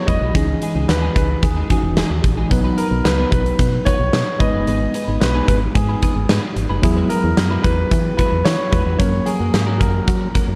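A straight 4/4 pulse at 111 BPM from a huge, up-front arena drum kit of hi-hat, punchy kick and medium-tuned snare drives this uplifting, nostalgic 1980s-style pop passage in B major, where a round, fast-attack FM bass anchors the low end, a worn, slightly out-of-tune tine electric piano supplies accompaniment, a compressed, scooped clean electric guitar with analog chorus picks a riff in the background, and an intimate, polished concert grand piano with audible action noise and delay carries the melody over C#madd9, B, G#m, Eadd9 and F# chords, with the dark, warm mix sitting in a moderate concert hall reverb.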